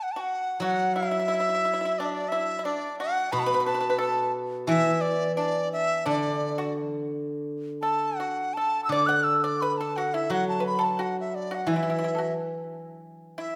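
Chinese traditional chamber ensemble music in D gong mode, this festive, pastoral excerpt moves at 87 BPM in 4/4 with a free, rubato feel. An airy bamboo dizi carries the melody up front, its buzzing membrane, tongued chiff and unsteady straight tone heard close, while a bright, dry pipa adds a percussive second line from 0.2 seconds. A ringing, silvery steel-string zither, played with fingerpicks, supplies low accompaniment from 0.6 seconds, and the whole ensemble sits in a reverberant recital hall.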